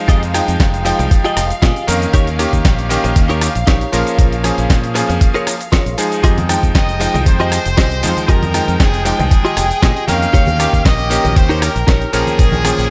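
Nu-disco in F minor at 117 BPM, this groovy, cosmic excerpt moves in 4/4 with a light swing on the sixteenths, cycling through Fm9, Eb7 and Bbm7. A bright electric grand piano with a cutting, clangy vintage edge carries the accompaniment, while a lush bowed string section holds sustained chords in the background, pumping against the sidechain. A clean, twangy electric guitar recorded direct picks a compressed riff through analog chorus, over a bright fingered electric bass. The gritty, tape-toned drums pair a thumpy electronic kick up front with a sampler-style kit of hi-hat, rim click, shaker and medium-tuned snare, both in studio reverb. At 6.4 seconds low-tuned congas with soft hands join from the background, and at 6.8 seconds a clear, present trumpet section takes the melody with light vibrato and tape echo, all within a digital ambience.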